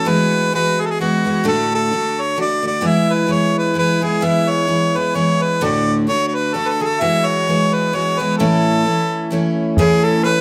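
A swung triple-time lilt drives this lively, cheerful Celtic folk waltz excerpt, where a clear, classical-style harmonica carries the melody up front over a bright, full-bodied, shimmering, octave-doubled picked twelve-string acoustic guitar with audible finger squeak, until at 9.8 s a pure, woody baroque flute with vibrato and a soft-edged attack enters in the background as a second line alongside an open, boomy bodhran, the whole heard in a moderate studio reverb.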